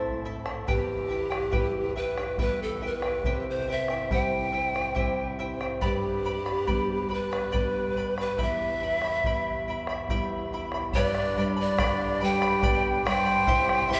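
A bright, shimmering charango and a fingerpicked nylon-string guitar open this melancholic yet festive Andean folk piece in a slow 3/4 at 70 BPM. A deep, distant bombo joins at 0.5 seconds, and at 0.7 seconds a breathy bamboo pan flute takes the melody, close-miked and up front with vibrato and a soft, chiffy attack, over chords moving through A minor, E minor, C and G. At 11.0 seconds a veiled trumpet in a bucket mute adds a dark, classical second line from afar, and a long cathedral reverb gives the ensemble the spacious sound of a church or concert hall.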